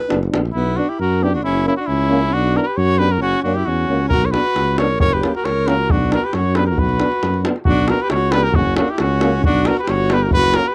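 Restless and fiery, this short Balkan brass band piece in B harmonic minor moves at 135 BPM in a straight 2/4, with an up-front trumpet carrying the melody from 0.5 seconds and a clear alto saxophone with light vibrato playing a second line. A mellow, prominent tuba anchors the bass while a French horn and a distant, roomy euphonium hold background accompaniment over a Bm and F# alternation, and a tight, band-limited davul sounds briefly at the start before returning at 4.1 seconds. The dry, close recording has a 1970s studio character, and the passage is cut from a longer piece.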